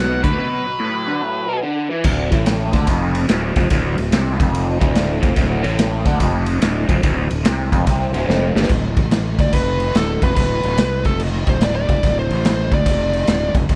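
A nasal lead guitar with a parked wah stands out, opening briefly with a second line and returning at 9.4 s to carry the solo in an overdriven, picked tone. This gritty, raunchy blues rock and southern rock piece, cut from a longer recording, moves at 144 BPM in 4/4 with a 65% swing on the eighths. At the start, a dark octave-fuzz lead guitar states a short melody that runs into a break, while a lo-fi, double-tracked garage guitar drives the riff with overdrive and phaser through a drum fill that ends at 8.7 s. A growly fuzz fingered bass sits up front throughout, alongside a saturated acoustic drum kit with a punchy kick, medium-tuned snare and rolled-off top, pumping in a bright stone room. Small room ambience frames the power-trio sound, with the harmony moving from B5 to D5.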